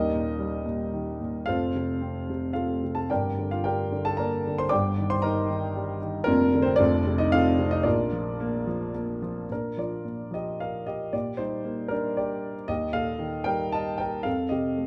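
A grand piano, intimate and up front with audible action noise, carries this lyrical classical solo in Bb major, played with rubato in 3/4 at 112 BPM. The mood is warm and relaxed, and the natural tone sits in a moderate recital hall reverb as the harmony moves from Eb through Gm and Cm/G to settle on Bb at 7.9 seconds, before a new section begins at 9.5 seconds. This short passage is cut from a longer piece and closes on an F chord at 14.3 seconds.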